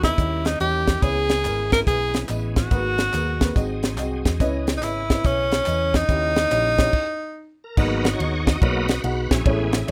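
A swung 4/4 groove at 142 BPM drives this fervent, soulful uptempo gospel in G# minor, built on a dry, tight funk drum kit with a high-tuned snare up front and a round, punchy hollow-body electric bass. A dark, woody upright piano with audible action noise accompanies, while a bright tonewheel organ holds sustained chords in the background through a slow rotary speaker and chorus vibrato. An edgy, forceful tenor saxophone leads with scooped, jazz-style lines, tambourine and handclaps sit quietly from 1.0 s, and after a stop at 6.9 s the organ takes a solo at 7.8 s, all in a small room with the rough feel of a home demo.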